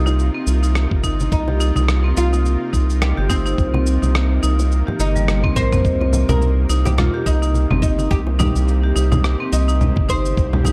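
A swung groove at 106 BPM in 4/4 drives this hypnotic, earthy slice of organic downtempo, cut from a longer piece in C minor pentatonic over a Cm7 chord. A gritty, compressed sampler-style kit of congas, rim click, shaker and toms comes in at 0.1 seconds, joined at 0.9 seconds by a thumpy electronic kick, both re-recorded in a large room, while close, dry bongos and congas played with soft hands sit in the background. Up front, a round, deep analog bass with a fast attack and tube saturation pumps against the sidechain, and a marimba struck with hard mallets spins bright, airy arpeggios through tape echo. A plucked, fretless oud with woody double strings carries the melody, also treated with tape echo. Underneath, a tense, string-like bowed drone holds sustained chords with vibrato, a slow attack and a long release, coloured by ring modulation, sampler grit and its own reverb. A band accent at 5.3 seconds and a short drum fill from 5.4 to 5.8 seconds mark the turn into the second section, all inside a dark, warm digital ambience.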